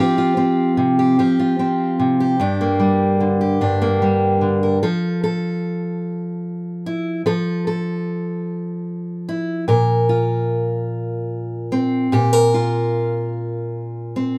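A fingerpicked steel-string acoustic guitar carries this short folk excerpt alone, its warm, up-front tone ringing in light reverb with an auditorium-sized body across a range from G2 to Bb4. The mood is melancholic and wistful, moving in a straight 6/8 through open, suspended colours, Fsus2 to Gm, then settling onto Fmaj7 at 4.8 seconds before drifting to Bbsus2 at 9.7 seconds.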